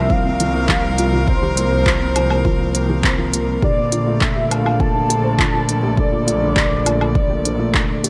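A velvety, detuned synth lead carries a hopeful, luminous melody through this short cut from a piano and strings electronica piece at 102 BPM in 4/4, its chorus and digital delay floating over biting, bowed string quartet chords, a felt-muted upright piano riff with audible action noise and its own delay, a distant bowed double bass section with sidechain pumping, a soft round pluck arpeggiating in the background, a punchy electronic kick and an up-front deep house kit of handclaps, smooth hi-hat and woodblock, as the harmony moves from C7sus4 to Bbmaj7 at 3.6 seconds under light reverb.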